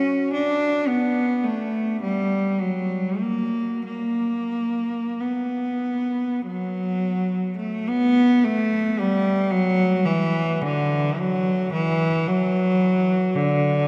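A lone bowed cello, clear and intense with light vibrato and a smooth top, sits up front in a vast, echoing cathedral space to open this lonely, meditative classical fragment in B minor, moving freely in a rubato 3/4 at 35-58 BPM between D3 and D4 and stating its phrase once more from 7.9 s.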